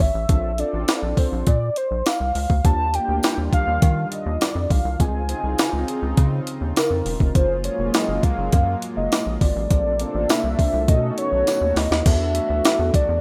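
Early-eighties boogie funk with a feel-good, smooth mood, heard as a short cut from a longer piece in a rough home-demo mix with light reverb. A velvety synth lead, soft-edged and touched with chorus and vibrato, carries the melody over a rubbery, nasal square bass with a bouncy filter pluck that sits up front. The sampler-style breakbeat kit is gritty and compressed, with a thumpy kick and a high-tuned snare, and it rolls into a drum fill from 11.5 to 12.1 seconds. Dark, round synth brass adds chorused accompaniment beneath, a very quiet jingly tambourine ticks along in a small room, and a shimmering, retro pulse-width pad enters at 2.6 seconds with sustained chords. The harmony glides through lush major-ninth chords such as Bbmaj9, Ebmaj9 and Gbmaj9 before turning to B7 and landing on E9sus4 as a new section begins.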